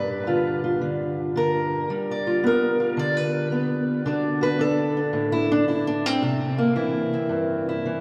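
Acoustic country blues with a gritty, swaggering mood, this 8-second fragment of a longer piece swings at 111 BPM in G mixolydian as a lone fingerpicked steel-string parlour guitar, dark and boxy and sitting up front, moves from G7 to D at 4.0 seconds and C7 at 6.2 seconds, its notes ringing out into a vast, echoing cathedral reverb.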